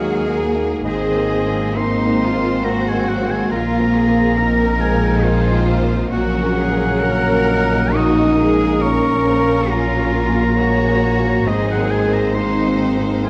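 A slow, rubato 3/4 at 68 BPM gives this cinematic orchestral film score a breathing, unhurried sway, and its mood is moving and hopeful, in Gb lydian. The melody rests with a lush studio violin section sitting in the background, bowed with vibrato and a smooth, focused top. A clear solo oboe carries a second line above it with light vibrato and classical poise. A chamber violin section adds another line with expressive portamento. Beneath them, a soft felt-muted upright piano with audible action noise, a distant, very quiet viola section, fingerpicked harp arpeggios that ring gently, and dark, tight French horn chords fill out the harmony. A focused cello section and an up-front double bass section anchor the bass as the chords move from Ebm through Abadd9, Bbsus2 and Gbmaj7/Bb, all heard in this 13.3-second passage cut from a longer piece, set in a wet scoring-stage reverb with a dark, warm production.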